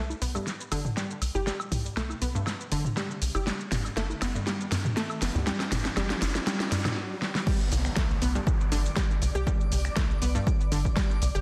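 Hopeful and euphoric, this progressive house excerpt builds over a tight, punchy sequencer bass, a round analog pluck arpeggio with chorus and dub echo, and a fat-snared pop drum kit with shakers, finger snaps and crash, while tape-warm electronic congas, woodblock and toms join a drum fill and a riser and downlifter hover in the background. After a brief stop at 7.0 seconds, the drop lands at 7.5 seconds with an overdriven electronic kick up front, and moments later a twinkling granular texture of octave-up shimmer glints behind. Sidechain pumping breathes through the bass, pluck, texture and percussion, all set in a moderate room under a dense, heavily limited master.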